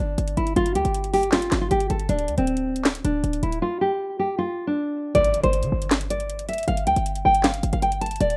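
A fingerpicked nylon-string guitar leads this dark, brooding trap excerpt, its full-bodied, deep classical tone softened by a low-pass filter and set in plate reverb. The track moves at 157 BPM in 4/4 with a half-time feel, and the harmony sits on G5, drops away at 2.1 seconds, then returns to G5 at 5.1 seconds. Underneath, a short 808-style bass gives punchy, tight sine hits with a noise layer, a fast attack and a decaying tail. An electronic trap kit of handclaps, metallic hi-hats and a sharp snare carries vintage 12-bit sampler grit, and it sits up front alongside the guitar and bass. A very quiet electronic impact marks the start of the second section at 5.1 seconds. The sound is a rough home demo mix in a moderate studio reverb.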